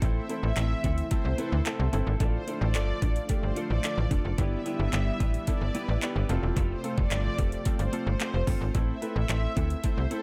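Bathed in an echo-heavy digital ambience, this euphoric, carefree dance-pop excerpt moves at 110 BPM in a straight 4/4, cycling through Am, Dm, G6 and F as a drop that begins again at 8.7 seconds. Up front, a snappy, metallic slap-like FM bass and a smooth R&B drum kit with knocking kick, metallic hi-hat and handclaps drive the groove, while a polished grand piano with sidechain pumping and tape echo carries the accompaniment. A lush, detuned supersaw pad sings the melody from 0.2 seconds, a clean twelve-string electric guitar with analog chorus plays a riff in the background, and a very quiet, shimmering pulse-width pad holds dark sustained chords until 8.7 seconds.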